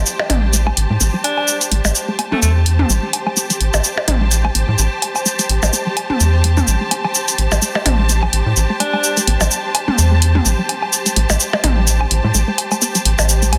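Heard in a lush hall reverb and a dense, heavily limited modern master, this cool, sparse minimal techno excerpt runs at 127 BPM in 4/4 with a light swing on the 16ths, sitting on a single Am7 chord in A minor. Up front, a rubbery, hollow square-wave bass bounces through tube saturation with a dark, sustained low end, while an electronic cabasa and hi-hat, analog and close, drive the groove. Layered electronic percussion blips, toms and woodblock add tape-echoed detail with a produced, small-room character. In the background, a juicy, squelchy blip pluck repeats a short riff through chorus and tape echo, and a clear, distant symphonic string section holds a bowed, focused texture above. An edgy, punchy alto saxophone cuts in briefly as a forceful solo with vibrato and tape echo, first at 1.2 seconds and again at 8.8 seconds.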